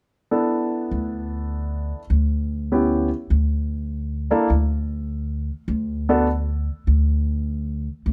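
Jazz with a playful, relaxed swing feel, this short excerpt cut from a longer piece moves in 4/4 with swung eighth notes. An upright piano carries the melody from 0.3 seconds, its tone woody and mellow, staying in a middle register and sitting up front in the mix. An upright bass enters at 0.9 seconds with plucked steel strings, giving an acoustic, woody and warm low end that carries on after the piano stops at 6.3 seconds. The harmony rests on a single suspended chord over a D bass. Light reverb gives the pair a gentle sense of space while keeping both instruments close and intimate.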